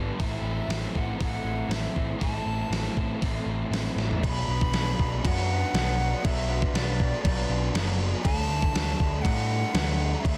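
Three overdriven guitars and a growly, punchy electric bass open this hazy, blissful shoegaze and dream pop excerpt together. Two of the guitars sit in the background until 4.2 s: one biting and double-tracked with spring reverb, the other crunchy with reverse reverb. A raw, lo-fi garage guitar with analog chorus carries on. From 0.2 s an airy silver concert flute with vibrato and analog delay floats above a thumpy, sampler-style 80s drum machine that sits up front with a gated-reverb snare, and a drum fill at 4.0 s marks the shift from Am to Bm before the harmony lands on Dsus4, all within a dense, heavily limited modern master steeped in digital ambience.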